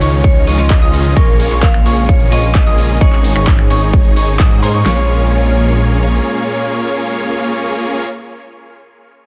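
Festival progressive house at 130 BPM in Bb minor, this powerful, emotional excerpt opens on a drop where a punchy, overdriven big-room kit with a huge snare, metallic hats, snaps, claps and ride drives under a euphoric, sawtooth supersaw riff with sidechain pumping and dub echo, while a thick, menacing detuned saw bass sits up front until 6.2 s. Behind them, a brilliant baby grand plays high pumping arpeggios with dub echo, a ringing hard-mallet vibraphone carries the melody through its own dub echo, a lush, airy unison pad holds sustained chords, and a very quiet, clean picked electric guitar adds accompaniment over Dbadd9, Bbm7 and Absus4. The drums drop out around 5.0 s, leaving the dense, heavily limited, dry mix to the bass and the melodic parts.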